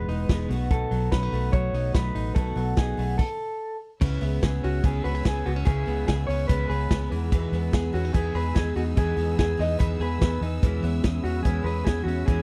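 This youthful, nostalgic slice of jangly indie pop at 145 BPM opens with a dark, slightly broken-up lead guitar through a small old amp carrying the melody, alongside a bright, shimmering twelve-string acoustic with audible finger squeak, clean compressed electric arpeggios and a round, foam-muted bass, while an up-front vintage drum kit with a punchy kick joins at 0.1 seconds. Slapback echo colours both electric guitars over a B7 chord until a brief stop at 3.2 seconds. At 4.0 seconds a lush, bowed string section slips in softly in the background as the harmony moves through C#m7 and Emaj7, all within a dry, close 1970s-style studio sound.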